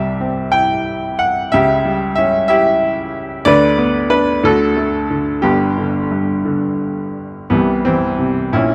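In a 6/8 with free rubato, a bright, slightly worn baby grand piano plays a peaceful, lyrical classical solo from G1 to G5, its brilliant, short-sustained tone captured close and up front in a recital hall with moderate reverb, moving through C, C#dim, Bm/D, D and G before returning to C at 7.5 seconds in this brief excerpt cut from a longer piece.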